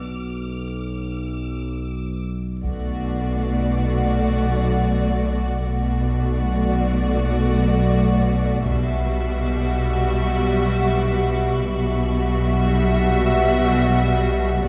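A warbling, detuned analog drone with chorus opens this tense, eerie suspense-film cue beside a faint, clear high violin texture, and at 2.6 seconds bowed string sections enter: a smooth violin melody over a lush second violin line, focused violas, up-front double basses and background cellos, with a taiko ensemble struck with heavy sticks sounding distantly, the whole heard from further back in a wet scoring-stage reverb flecked with vinyl crackle.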